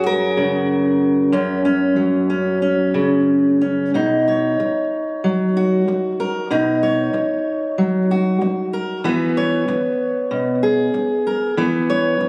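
In a loose, rubato 4/4 near 94 BPM, this peaceful, pastoral folk excerpt in B major (tuned to A4 = 445 Hz) features a lone fingerpicked steel-string acoustic guitar, bright and up front with a touch of tape echo, ranging from F#2 to C#5 as it moves from an F# chord to Badd9 at 3.9 seconds and E at 9.0 seconds, all caught on a phone in a large studio with a club-like reverb.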